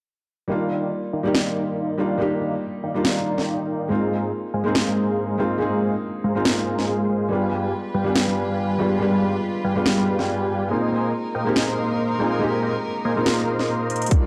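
A felt-muted upright piano and a dense, compressed supersaw riff open this bright, playful future bass excerpt in Eb major at 141 BPM, felt in half-time with a light swing on the sixteenths. The piano sounds soft, boxy and intimate, its short sustain carrying audible action noise, while the supersaw is huge and airy, a detuned unison layer with a sub octave, noise and vibrato, colored by cassette tape, a low-pass filter and digital delay, with both parts pumping against the sidechain. At 1.3 seconds an overdriven trap kit arrives up front with a sharp snare and metallic hats, and from 7.3 seconds a chamber string section adds gently bowed sustained chords, sul tasto with light vibrato, sitting lower in the mix. The harmony moves from Ebmaj9 through Ab6 and G7b9 to Bb7sus4, and a drum fill at 13.9 seconds leads into a hard-clipped electronic kick and a barely audible riser at the very end. 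The production is dark overall, with a moderate digital room reverb around the parts.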